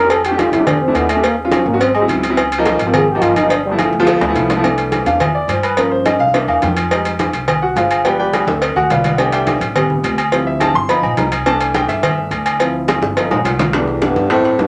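A roomy club reverb hangs around this short, sunny cut from a longer Afro-Cuban jazz piece, which moves at a lively, straight four-beat stride. A growling trombone opens with a raspy, gritty solo full of scooped notes, sounding distant and dark over an up-front grand piano and a woody, thumpy pizzicato upright bass on gut strings. From 4.6 seconds the piano takes its own solo, moving through rich extended chords while drum fills mark off the phrases. A bright percussion bed runs throughout, with ringing metal-shell agogo bells and timbales, tight high-tuned cowbell and hard-hand bongos with a vintage, band-limited tone, and soft-hand congas ringing in the background. Near the close, at 13.7 seconds, a mellow, subtone baritone saxophone slides in up front with vibrato and a smooth top as a low second line, and the trombone returns just after.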